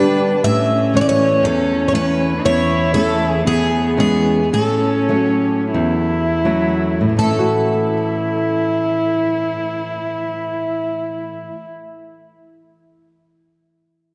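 A dreamy, reverb-soaked cassette sound with a lush hall and a dulled top end frames this nostalgic, tender fado-style ballad in A major, cut from a longer piece, where a bright, shimmering, octave-doubled twelve-string acoustic guitar carries the melody through analog delay with audible finger squeak, a dark, boxy cello bowed sul tasto with light vibrato adds an intimate second line, and a warm, fingerpicked flamenco guitar on fresh strings accompanies in a free rubato around 38-61 BPM that slows between 2.4 and 7.2 seconds.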